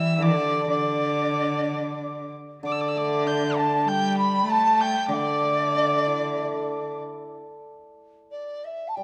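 Festive yet graceful, this short passage of Chinese traditional chamber music is cut from a longer piece and moves in four with a rubato, unevenly placed pulse. A large bamboo dizi carries the melody with a pure, mellow tone, the buzz of its membrane, tongued notes and vibrato, sounding distant and slightly unsteady. A bowed cello and an erhu each play a second line up front: the cello focused with vibrato, the erhu intimate and airy with light vibrato, soft attacks and portamento. A hammered dulcimer accompanies throughout with a shimmering, ringing acoustic sound. The cello and erhu stop at 7.0 s, leaving dizi and dulcimer to carry a new section from 7.7 s, inside a moderate scoring-stage reverb.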